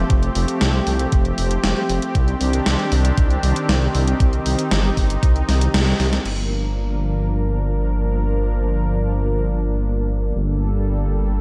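Bathed in light digital ambience, this cinematic, nocturnal synthwave piece moves at 117 BPM in a straight 4/4. It is built on a smooth, detuned analog pad with chorus, tremolo and sidechain pumping, over a deep, rumbling saw bass that beats and pumps up front. A thumpy electronic kick and a gated 80s digital drum machine, with crash, hi-hat, a gated-reverb snare and slapback echo, drive the opening; the kick drops out at 5.3 seconds, and the drum machine carries on through a band accent at 5.7 seconds and a drum fill at 6.0 seconds. Meanwhile the chords shift from Fadd9 and Cmadd9 to Bb/G and Gmadd9 in the second section.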